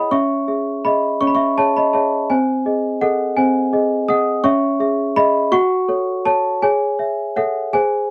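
Set in a straight 6/8 at 55 beats per minute, this classical lullaby in C# minor is an eerie, fragile fragment cut from a longer piece, played by a worn celesta alone from 0.0 to 8.1 seconds across a range of B#3 to D#6. The celesta's bell-like, slightly out-of-tune tone, struck with medium felt hammers, sits up front with a boxy small-room character, tracing a progression from C#m through G#/B#, back to C#m and on to F#m before settling on C#m/G#. The sound is dry and close, in the manner of a 1970s studio recording.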